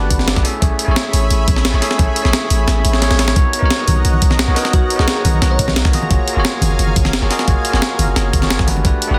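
Uplifting and warm, this liquid drum and bass passage in straight 4/4 rides on lush major-seventh and ninth harmony, moving from Amaj7 through Bmaj9 and F#maj9 to Gmaj9. A bright, clean tine electric piano carries the accompaniment with a delay trail. Behind it, a thick, detuned sawtooth-and-square unison pad sustains slow-attack chords, treated with chorus and phaser and pumping against the sidechain. Underneath, a deep, mellow sine 808-style bass holds long, decaying notes. A gritty, compressed breakbeat kit with a medium-tuned snare and hi-hat sits up front in a large-room sound. A knocking, layered electronic kick drops out at 2.7 seconds, with a drum fill arriving at 3.0 seconds before the kick returns, and soft-handed acoustic congas slip into the background at 3.9 seconds. At 4.6 seconds, a sparkling, full-bodied FM electric piano briefly adds a melody, coloured with chorus, delay and vintage 12-bit sampler grit, all set in light digital ambience within a dense, heavily limited modern master.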